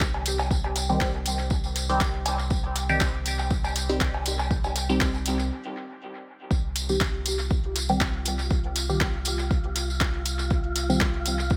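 An echo-heavy, cavernous mix opens this deep dub techno excerpt in C minor at 120 BPM with a lightly swung 4/4 feel, where a round, dark analog bass pumps beneath an up-front deep electronic kick and a layered deep house kit of handclaps and metallic hi-hats, a jingly vintage tambourine, and a small-room cowbell and woodblock that drop out at 4.9 seconds, while a muted, detuned chord stab with phaser and dub echo pulses from near the start, takes a filter sweep after a short break at 5.5 seconds, and is joined at 7.7 seconds by a breathy, wind-like tuned noise texture.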